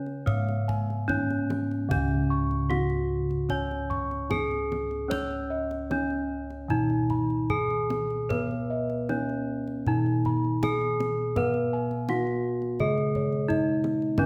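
Serene and shimmering, this fragment of a longer Javanese gamelan piece moves at 71-88 BPM in a straight 4/4, tuned to a Db slendro scale. An up-front bronze metallophone struck with a horn mallet rings out the melody over a darker, smooth metallophone accompaniment played with a wooden mallet, while mellow bossed gongs under padded beaters anchor the bass and a second, mid-forward set of round, beating gongs adds high arpeggios from 0.3 s. A deep, close and dry kendang drives the rhythm, all set in a recital hall reverb, with a brief opening giving way to the main passage at 1.9 s.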